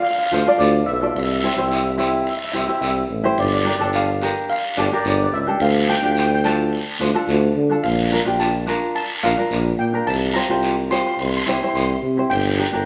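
A shimmering, airy steel pan melody played with medium rubber sticks opens this festive, sunny calypso at 108 BPM in a straight 4/4, alongside a bright, thumb-plucked tenor ukulele and a raspy, compressed, saturated guiro. At 0.3 seconds a tuba enters with soft attack, a smooth top and light vibrato, playing a jazz-style bass that sits up front as a solo voice over chords moving from Dm and C through Gm7, Bb and Csus4. The band plays live in one room, bathed in a lush large-studio reverb, and the piece is cut from a longer performance.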